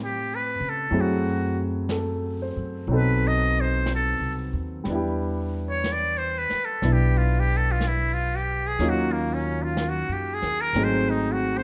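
Over a slow, swung 4/4 pulse at 61 BPM, with brushed snare and hi-hat joining at 0.9 s, this tender, late-night jazz ballad excerpt features an intimate, breathy trumpet in a metal mute, buzzy, thin and whispered, carrying the melody up front, while a woody, growly pizzicato upright bass and a deep, natural concert grand piano move through chords such as F#m7b5, B7b9, Em7 and Ab7b9 in a moderate large-studio reverb.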